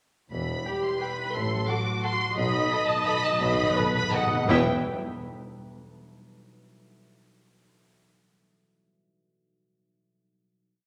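Sweeping and dark, this short orchestral ballroom waltz in 3/4 with a rubato feel sets a lush, focused violin melody up front over a second violin section's soft-attack after-beat chords, a smooth, even viola counter-melody, ringing fingerpicked harp arpeggios in the background that ring on through the final chord until 5.6 seconds, a very quiet bowed cello bass on the beats, a double bass section and a vintage tuba doubling the bass line, and a round, soft-mallet timpani fill from 2.4 seconds, inside a wet recital-hall reverb.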